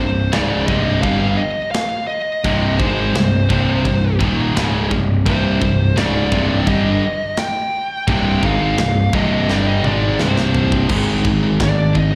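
Heavy metal with an aggressive, dark mood, cut from a longer piece, where a high-gain lead guitar carries the melody over a bright, heavy riff guitar, a distorted rhythm guitar tucked in the background and a very quiet, double-tracked semi-hollow guitar, all bar the semi-hollow touched by slapback echo. Up front, a growly fuzz bass is picked alongside an acoustic kit with a tight kick, medium-tuned snare, toms and crash in a big room, and the drums play a fill at 9.5 seconds before the harmony shifts from C minor to an Ab power chord at 10.9 seconds. A dark second lead through a small cranked amp slips in at 11.6 seconds, and the whole take sounds like a live gig heard through the venue's PA with recital-hall reverb.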